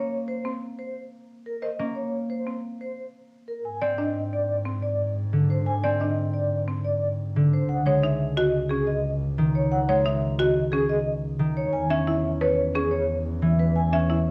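A buzzing, woody marimba struck with hard mallets enters at 0.5 seconds, spinning dry, percussive arpeggios up front alongside a dark, ringing vibraphone melody with fast motor vibrato and a mellow, fingerpicked concert harp accompaniment. This hypnotic, propulsive minimalist classical pattern music moves at 178 BPM in 6/4. A close, bowed double bass joins at 3.6 seconds with expressive vibrato and portamento as the harmony moves through Ab, Dbsus2 and E, all under light reverb and the worn, warbling pitch drift of old cassette tape.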